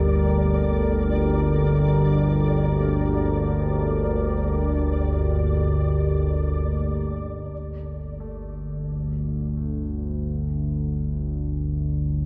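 Drenched in a cavernous cathedral reverb and dulled at the top, this desolate, ominous dark ambient drone in G minor drifts in free time, led by an up-front analog drone with resonant pulse-width modulation and chorus; above it sit a deep, moody pad with chorus holding a Gmadd9 chord and a flickering, grainy granular texture on a high D, both of which stop at 7.5 s as the harmony shifts to Gsus2, while a very quiet, intimate grand piano plays arpeggios with audible action noise throughout.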